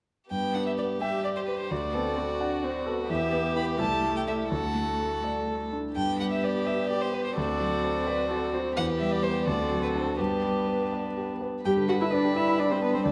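At 0.3 s a cheerful, spirited classical-period movement for piano quintet begins in G major at a quick 85 BPM in 6/8. The concert grand piano sits up front with deep bass and audible action noise, a dark, nasal viola adds woody accompaniment, and two violins are bowed sul tasto with a soft attack: the warm first violin floats on the melody above a clear, pure second line. A dark, intimate cello joins in the background at 1.0 s with its own second line, all in a wet recital hall with 1.4 s of reverb, and this passage, cut from a longer piece, moves into a new section at 11.6 s.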